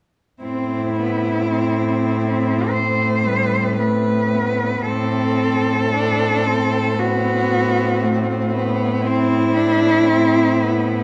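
Classical and lyrical, this elegiac, melancholic passage for four cellos moves at a slow, rubato 50-60 BPM in A minor, cut from a longer piece and resting on an A minor chord from 0.4 s. A clear, focused single cello sings the up-front melody with vibrato, while a smooth, even second line sits in the background, a rich bowed cello with a smooth top fills the accompaniment, and a rich, smooth bass cello holds A2 up front. All four play from 0.4 to 11.0 s, wrapped in light reverb.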